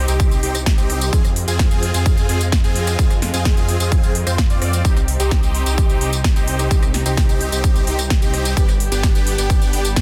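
A barely audible downlifter opens this anthemic, powerful festival progressive house excerpt at 129 BPM in C harmonic minor, as a huge, euphoric supersaw riff with phaser and delay rides over a thick detuned saw bass, background unison-lead arpeggios with chorus and delay, and intimate sul tasto chamber strings holding sustained chords, all pumping to the sidechain through Cm, Fm and G. A punchy, up-front electronic kick lands at 0.2 seconds beside a tape-warm big-room kit of crisp hats, snare, rim click and tambourine, re-recorded in a large room. The mix is dry, dense and heavily limited.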